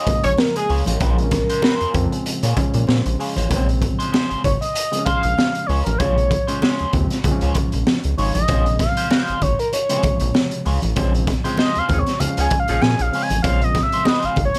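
A raw garage drum kit with a punchy kick and high-tuned snare drives a hypnotic, swung 96 BPM funk groove in Bb minor, with a round, deep analog bass, background congas, a slightly broken-up electric guitar through wah and spring reverb, and barky overdriven reed electric piano stabs that take a fill at 2.3 seconds, before a smooth, wave-folded synth lead with chorus and vibrato takes a solo from 3.5 seconds and a clear, loose horn section returns at 11.9 seconds for a band accent in this short piece cut from a longer one.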